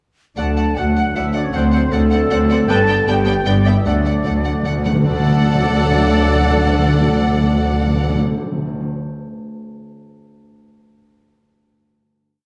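Triumphant and soaring, this heroic adventure film cue in D major moves at 154 BPM in 3/4, with lush, vibrato-rich violins carrying the melody over a second violin line, an airy flute doubling the tune at the octave, a soft-attacked oboe and a very quiet vintage-toned clarinet adding short accented chords, and distant, roomy trumpets doubling the tune too. Beneath them, smooth violas, tight French horns and very quiet trombones hold sustained chords, while a very quiet harp rings out broken chords, focused cellos mark the bass on the beats and distant double basses double the bass line. The theme runs from 0.4 s through a D, D7, G, D progression before up-front timpani on D enter at 3.9 s and roll into a final chord from 5.1 s, all bathed in a wet scoring-stage reverb.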